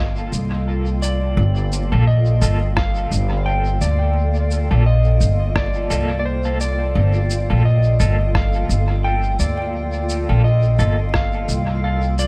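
A meditative, deep ambient dub piece opens on a woody, up-front pizzicato upright bass, a blurred, evolving granular pad with its own reverb, and a dark lap steel melody played with fingerpicks and slide in volume swells, trailed by dub echo. A muffled, pitched-down electronic shaker and rim click arrive at 0.3 seconds with dub echo, clean picked electric guitar stabs with tremolo and echo join at 1.9 seconds, and a compressed, thumpy kick lands at 2.8 seconds. The echo-heavy mix carries little reverb and a layer of vinyl crackle, and the whole passage rests on a single Gm9 chord.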